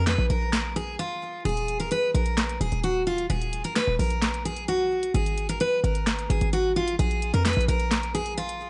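Hip hop in a trap style, this brooding, hard-hitting clip moves at 130 BPM in 4/4 with a half-time feel, set in Eb minor. A picked steel-string acoustic guitar carries the melody between F4 and Cb5, its bright, full-bodied jumbo tone sitting up front and trailed by a digital delay. Beneath it, a short 808-style bass spans Eb1 to F2; it is punchy and tight, with a sine core, a noise layer, a fast attack and a decaying tail. The electronic trap kit enters at 0.1 s with a sharp snare, handclaps and warm hi-hats, the whole kit pushed forward in the mix. After an opening break, the harmony moves from Bb5 to Eb5 at 1.5 s, then to Absus2 at 5.1 s and back to Bb5. Light reverb and digital ambience frame the parts, while vinyl crackle and a rolled-off top end give the excerpt a hazy sheen.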